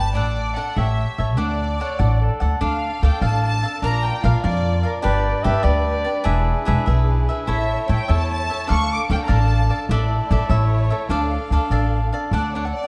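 A bowed violin section opens this proud, festive mariachi passage in a lilting 6/8, carrying the melody with a focused, vibrato-rich tone that sits at a distance, while a crisp, picked cavaquinho and a thumpy pizzicato upright bass on gut strings play up front from the first moment. At 1.8 seconds a distant trumpet adds a soft-attacked, classical-style second line with vibrato, heard in two short phrases. From 2.6 seconds a chamber violin section holds intense sustained chords beneath, as the harmony moves through a minor-key cycle touching Bb, G and E7, then passes through a dominant A before resolving back to D. The lead violins drop out and return in fragments, while the bright cavaquinho and the woody bass keep the dance moving. A moderate recital-hall reverb and a dark, warm production give the ensemble a roomy glow in this short excerpt cut from a longer piece.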